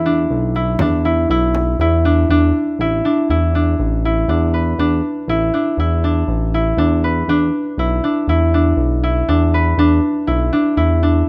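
A mellow concert harp rings up front with fingerpicked arpeggios between D4 and B4, setting a hypnotic, urgent tone in this contemporary chamber piece in 5/4 at 120 BPM, cut from a longer work. Beneath it, a smooth gliding synth bass of sawtooth and square waves holds sustained low notes with portamento, while a deep, large frame drum struck with hard hands sounds close and dry from 0.5 to 2.2 seconds. The chords move from E5 to D5 at 2.3 seconds and back to E5 at 7.3 seconds, captured with close, detailed microphones and little reverb.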